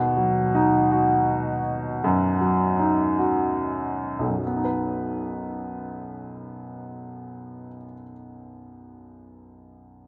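Romantic and heartfelt, this slow pop fragment in 6/8 and B major, moving at 47-55 BPM counted in dotted quarters, features a clear, woody upright piano accompaniment with long sustain, sitting up front from 0.0 to 10.1 seconds across a range of B1 to B4 in a wet spring reverb, with the tempo slowing over the first 4.4 seconds before a new section begins.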